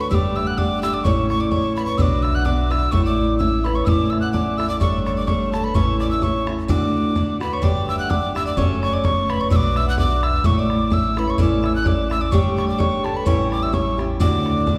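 A lightly swung 2/4 polka pulse drives this lively, cheerful Celtic folk piece, cut from a longer tune, with a picked steel-string acoustic guitar set up front and a woody pizzicato upright bass sounding from the start and an open, boomy bodhran joining at 0.1 s. A hollow, airy tin whistle with a crisp chiff carries the melody, while a bright, ringing vibraphone with medium hard mallets and slow motor vibrato adds a second line over chords that move through Gsus2, A and Bm before settling on D. A generous recital hall reverb places the group further back in the room, and the same strain is heard twice, the second pass starting at 7.6 s.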